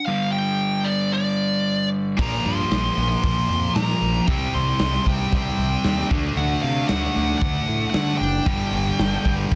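A straight, driving 4/4 hard rock pulse with a menacing edge opens on a smooth, dark overdriven lead guitar melody up front over a dark, hollow-body overdriven semi-hollow guitar riff, and at 2.2 s a bright, tight distorted guitar adds its own riff while a punchy fuzz electric bass and a raw garage drum kit join, the drums gritty and saturated with a rolled-off top, a punchy kick and a medium-tuned snare, in a dry, dense, heavily limited mix cut from a longer piece.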